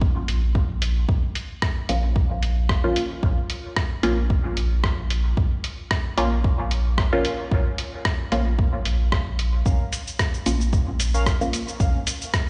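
A deep, up-front electronic kick and a round, soft sub bass pumping on Bb1 open this hazy dub techno excerpt in Bb minor at 112 BPM with a 16th-note swing, joined at 0.3 s by a muffled, pitched-down sampler kit of hi-hat, rim click and shaker trailing dub echo, then at 1.9 s by a muted, detuned chord stab sweetened by phaser and echo, before warbling, nostalgic synth keys with chorus drift in at 9.7 s, all set in a stone room's reverb with the top end rolled off.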